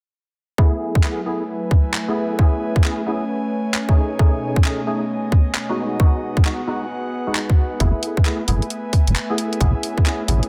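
Skippy and late-night, this two-step UK garage fragment at 133 BPM in F# dorian swings its 16ths under a tight, up-front electronic kick and a garage kit of handclaps and bright hats, while a hollow, percussive organ stab with delay and a filter sweep rides over an airy, breathy pad and a warbly, nostalgic tape-like pad that both pump against the beat through chords from F#m11 to Amaj9, B13 and G#m7, before a deep, dark wobble bass arrives at 7.8 seconds in a dense, heavily limited mix.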